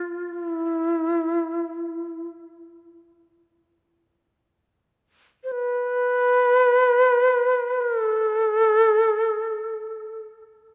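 A dark production bathed in moderate church reverb frames this solitary, meditative excerpt of traditional Japanese chamber music, where a lone breathy shakuhachi sits up front with bamboo chiff, tongued notes, expressive vibrato and rolled-off highs, falling silent at 2.3 seconds and returning at 5.4 seconds, its phrases moving between E4 and C5.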